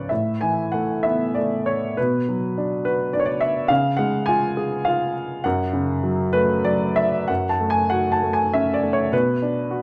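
In a rubato 3/4 that drifts between 93 and 108 BPM, this moody, brooding classical fragment in F# minor features a solo baby grand piano, warm, present and up front across a span from C#2 to A5, its harmony moving from Asus2 through Bm and C# to F#m before settling back on Bm at 9.1 seconds, the whole passage framed by a moderate recital hall reverb and a dark production.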